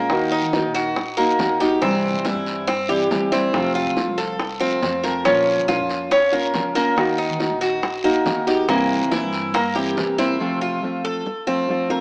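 In a straight four-beat feel, this Cuban son and guajira cut from a longer piece carries a warm, nostalgic mood. Up front, a fingerpicked classical nylon-string guitar plays accompaniment while a metallic Cuban tres, with double strings and some octave-doubled courses, runs picked arpeggios alongside it. Beneath them, a woody, thumpy pizzicato upright bass sits in the background, along with round, low-tuned bongos played with soft hands and a raspy guiro. The chords move through Ebm, C, F and Bbm, return to Ebm, then turn to C7. Just after the bongos drop out, at 10.4 seconds the bass and guiro stop and the guitar and tres carry a short break on F. A moderate plate reverb colors this rough home demo mix, which has a small-speaker sound.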